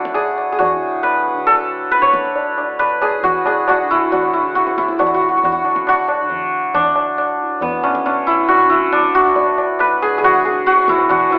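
Hindustani classical music in raga Yaman on D, devotional and meditative, moving at 137 BPM in 4/4 with a straight feel in this short cut from a longer piece. A bright, hammered santur carries the melody up front with a ringing shimmer, while a mellow, softly plucked tanpura holds a buzzing drone low underneath and a low-tuned tabla with a short ring keeps the pulse from 0.1 seconds. The sound sits in a small room heard from further back, with a thin telephone-like colour, and a second section begins at 5.0 seconds.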